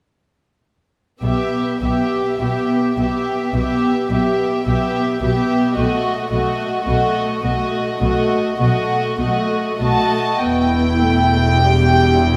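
Solemn and yearning, this slow romantic movement for string orchestra unfolds in E minor at a rubato pace of about 47-55 BPM in 4/4, cut from a longer piece. A violin section carries the melody high above, floating and pure with a soft attack and a smooth top, while a second violin section sits close and up front on a narrow inner line until 10.4 seconds. Beneath them, the violas supply a woody, lush accompaniment with vibrato, and the cellos sound distant and in the background, soft-edged and floating. The double basses anchor the low end with a dark, woody tone. Every section plays sul tasto, and the harmony moves from Em/B to B7 at 5.8 seconds, settling on E minor at 10.4 seconds as a brief new section begins. A concert hall reverb with a 2.1-second tail wraps the ensemble in a wet, spacious glow.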